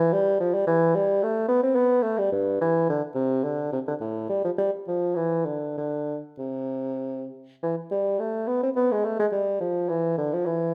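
A mellow solo bassoon with light vibrato carries this flowing, introspective baroque-style classical fantasia in a rubato 3/4 at roughly 95-110 BPM, ranging from G2 to C4 as it moves from C major into A minor at 7.6 s, sitting up front yet wrapped in the reverb of a stone room heard from further back, in a short fragment cut from a longer piece.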